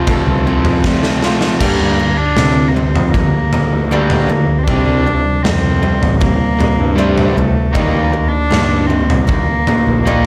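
A raw, gritty drum kit sits up front in a bright stone room, its punchy kick and medium-tuned snare rolling into a fill from 0.8 to 1.6 seconds, just as a reedy, nasal cello with an airy bow and gut-string tone enters on an up-front melody. This angsty, cathartic quiet-loud alternative rock cut moves at a straight 78 BPM in G minor, with an overdriven garage guitar riff and a fuzz-laden picked bass driving beneath. A boxy, swing-style acoustic guitar picks arpeggios in the background as the chords move from Fadd9 through Gm, Csus4 and Eb.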